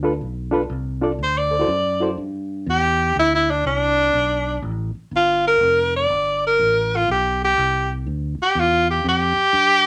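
A reedy, clean electric piano opens this rollicking, soulful electric blues shuffle, sounding up front through its built-in speakers over a round, direct and amped fingered electric bass. The swung feel gives the groove an easy bounce as the harmony moves from a rootless G7 to D7. A bright tenor saxophone enters at 1.2 seconds, sitting prominently in the mix with a soft attack and vibrato in a jazz style. The electric piano drops out at 2.1 seconds, and from 2.2 seconds the saxophone takes a solo over the bass alone as the chords return to G7. A wet small-room ambience surrounds the sound, and the recording is cut from a longer piece.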